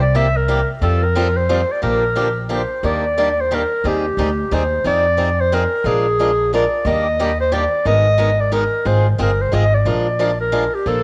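This home cassette recording has a light reverb and a studio ambience, and it comes from a longer piece. It is charming, swinging acoustic string jazz in Eb major, a waltz-time tune at 179 BPM with a mild swing on the eighth notes. Up front, a breathy clarinet sings the solo melody in a jazz style, with a soft attack, light vibrato and a gentle tape coloring. A picked acoustic guitar in swing style gives a bright, boxy accompaniment, also touched by cassette tape. The pizzicato upright bass, on gut strings, sounds woody and thumpy, and all three parts play together from start to finish. After a short opening phrase, the second section arrives at 2.8 seconds, moving through Ebmaj7, Abmaj7 and a Bb7 turnaround toward 9.9 seconds.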